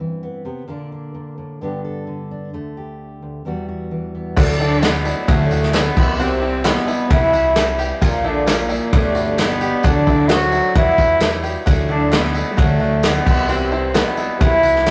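A nasal, reedy bowed cello carries the melody up front from 4.6 s in this uplifting, hopeful indie folk excerpt, cut from a longer piece. A full-bodied fingerpicked steel-string guitar opens alone and gives way at 4.4 s to a building band: dark, punchy hollow-body bass, an unplugged drum kit with dark cymbals and a rolled-off top played with bundle sticks, a twangy banjo arpeggiating in the background, a shimmering twelve-string guitar, a woody upright piano with audible action noise, a jingly, distant tambourine, a mellow trombone second line with vibrato, and hollow group handclaps from 4.8 s, heard through a rough rehearsal-room recording with tube saturation and a stone room's reverb.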